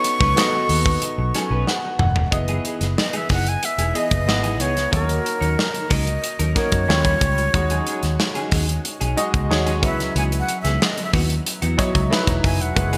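A breathy, expressive jazz flute with delay takes the lead and moves into a solo at 2.3 seconds in this slick, bittersweet 1980s jazz-funk pop excerpt at 92 BPM in C# minor, carried by a clear concert grand piano with analog chorus that plays a fill before the solo, a dark, compressed semi-hollow electric guitar riff with lush chorus, a punchy, round muted electric bass entering at 0.2 seconds, and an up-front modern studio drum kit with gated reverb that adds a fill, all set in a lush hall and a bright digital production.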